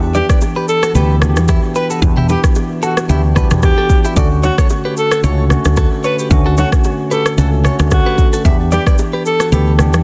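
Breezy and sunny, this short afrobeats clip cut from a longer piece sways with a light swing over Em7 and Dmaj7 chords. A punchy, woody fretless bass and a produced afro-pop kit with a deep kick, rim click, shaker and toms sit up front, while a bright tine electric piano accompanies and a clean, picked electric guitar plays a riff with tape echo, and very quiet, ringing bongos and congas add close, dry texture. Over it all, a breathy, whispered alto saxophone carries the melody with an intimate soft attack and its own tape echo, inside light reverb and a dense, heavily limited modern master.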